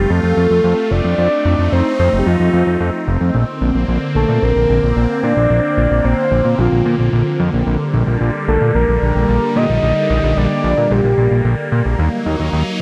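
A straight feel carries this dreamy, uplifting synthwave passage, where a fat, saturated analog bass with detuned sawtooth grit sits up front beneath a swirling, evolving pad treated with phaser and chorus. Over them a round, full-bodied lead, triangle and sine tones layered with a sub octave and colored by vibrato, chorus, phaser and digital delay, sings the melody until 11.7 s, just before the harmony turns to a shadowed E-flat minor at 12.0 s. The bright 1980s-style digital production is bathed in a moderate plate reverb.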